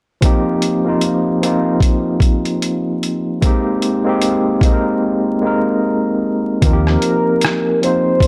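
A swung 4/4 groove sets the pace, carried by a boom bap sampler-style drum kit whose pitched-down, gritty kick, hi-hat and rim click sit up front with a compressed, tape-warm thump. Over it, a mellow tine electric piano plays clean, low-pass filtered chords, moving from Eb69 to Abmaj9 in a nostalgic, cosy lo-fi hip hop mood. At 5.0 seconds the music falls silent, returning at 6.6 seconds with the Eb69 chord and a velvety synth lead that adds a brief, sustained melody softened by chorus, vibrato and filtering. A deep dub fingered electric bass lands a single round, punchy low note with a dark, saturated edge, stopping at 7.0 seconds. The whole excerpt, cut from a longer piece, carries a dry, grainy hardware sound dusted with vinyl crackle and a touch of digital ambience.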